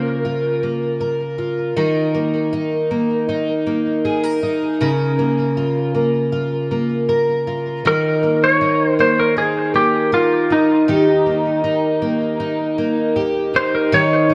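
A floating, ethereal dream pop fragment opens with a fingerpicked twelve-string acoustic guitar laying down shimmering, octave-doubled arpeggios with subtle chorus and digital delay under a brief twangy entry from a clean lap steel guitar, which drops away and then returns at 7.9 s with a compressed, scooped slide melody through its own delay, both parts up front in a lush hall reverb and dark, warm production.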